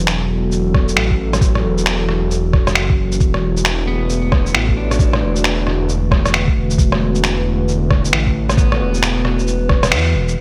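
A menacing, saturated detuned saw bass pumps beneath a warbling, lo-fi tape-like pad in this rainy, wistful future garage excerpt at 134 BPM with a 16th-note swing, while a thumpy, pitched-down kick and muffled finger snaps, shaker and rim click with gated reverb drive the groove, a dark, slightly broken-up electric guitar with delay joins at 3.9 seconds over the Esus2 to Bm7/E progression, and the kick drops out at 9.9 seconds on a band accent, all set in a lush hall and a bright 1980s-style digital production.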